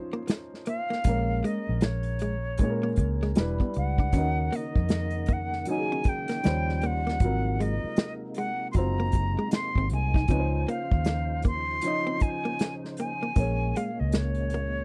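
A dry, close recording with a 1970s studio feel carries this sultry, soulful neo-soul R&B excerpt in Eb dorian at 78 BPM with a swung sixteenth feel. A dark grand piano lays down the harmony and a clean, compressed hollow-body archtop guitar adds a second line under a breathy, distant flute melody with vibrato and a slapback echo, while an up-front acoustic kit played with bundle sticks and a round, foam-muted electric bass drive the groove. From 4.1 seconds a fat, lightly overdriven tonewheel organ with key click, chorus vibrato and slow rotary speaker adds sustained chords in the background.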